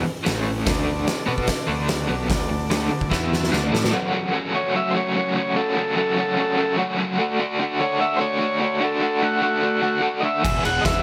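A straight 4/4 pulse at 147 BPM drives this raw, menacing garage-rock fragment in F# minor, where an oversized, low-tuned kit with a boomy kick, fat snare and dark cymbals booms in a pumping room alongside growling, overdriven bass and a crunchy, double-tracked guitar riff with tremolo. A vintage combo organ holds buzzy sustained chords underneath, and after a drum fill the kit, bass and those chords stop at 3.9 seconds, leaving the guitar with a vibrato-tinged organ melody in the background from 4.6 seconds. Rhythm section and organ chords crash back in around 10.4 seconds, moving from power chords on A, D and E to F#m, D and E under light reverb.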